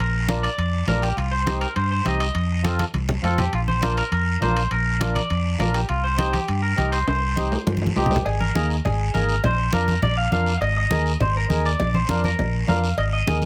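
Closely miked and detailed with a light reverb, this driving, danceable cumbia excerpt moves at 203 BPM in 4/4, cycling through Bb, Cm and F7 before shifting toward Absus2 at 8.3 seconds. A twangy, clean electric guitar carries the melody through spring reverb and slapback echo over a dark, round fingered electric bass, while a reedy, full accordion fills in the harmony. Ringing metal-shell timbales and cowbell, with drum fills at 2.6 and 7.1 seconds, join low-tuned, damped congas and a raspy guiro to keep the dance pulse going.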